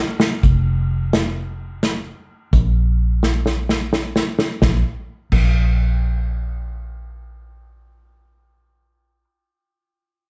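A three-four rhythm carries this easygoing, nostalgic honky-tonk and classic country fragment, where an acoustic drum kit played with bundle sticks keeps its medium-tuned snare, punchy kick, hi-hat and crash up front, with fills at the opening and from 3.2 seconds, beside a dark, round, foam-muted fingered electric bass that carries on alone after the drums stop at 5.5 seconds, the whole mix heard from further back in a moderately reverberant studio room with a dulled top end.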